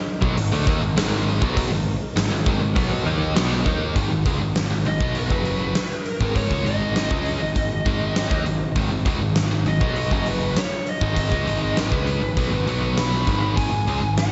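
A straight 4/4 hard rock groove on a huge, up-front arena kit with a fat snare and punchy kick drives this menacing excerpt, as a bright, distorted high-gain guitar and a background semi-hollow guitar with tremolo play the riff over a growly overdriven picked bass, a very quiet tonewheel organ with key click and slow rotary holds chords until 3.9 s, and from 4.9 s a dark, bluesy lead guitar with distortion and slapback echo carries the melody in a lush hall.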